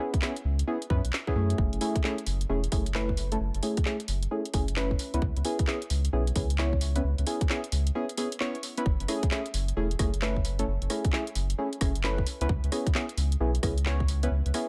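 A swung two-step garage shuffle drives this bouncy, late-night excerpt, built on a tight electronic kick and a layered kit of handclaps, rim clicks and warm hi-hats, all in a dry, small-room sound. A thick, saturated sub bass sits up front with fast-attacking, sustained notes, while deep, mellow chord stabs with chorus, digital delay and an evolving filter sweep move between C#m7 and F#m9. A short break arrives at 7.9 seconds, and the groove returns at 8.9 seconds.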